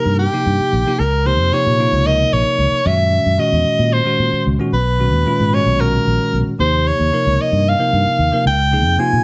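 Funky and bright, this short jazz cut in an odd 7/8 metre puts a bright soprano saxophone up front, singing the melody with vibrato and scooped notes over a bell-like, clean tine electric piano, both bathed in plate reverb. A round, punchy fingered electric bass enters at 0.1 s with an amped tone, anchoring the harmony as it moves from Eb9 through Gb13 and Bmaj9 before returning to Eb9 and landing on Db6. The studio room adds a moderate reverb around the ensemble.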